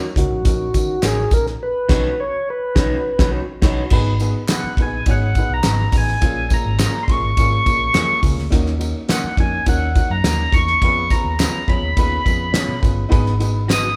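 Uptempo 1960s-style soul with a danceable, warm mood, heard as a short cut from a longer piece played live by a band in one room with moderate large studio reverb. A clear, clean tonewheel organ carries the melody up front, its slow rotary speaker giving it a gently turning shimmer. Beneath it, a woody upright piano comps the chords while a dark, round, foam-muted fingered electric bass anchors the low end. The cloth-damped, thuddy drum kit sits up front with a fat snare, tight kick and dark, rolled-off cymbals across hi-hat, ride and crash. A distant egg shaker, tambourine and group handclaps add sparkle from the back of a large room. A slightly broken-up electric guitar through a small old amp plays picked stabs between 1.0 and 3.8 seconds, overlapping a band accent, then returns only briefly at 13.7 seconds, after the harmony has moved through minor-seventh chords to a C#7 and settled back on G#m7.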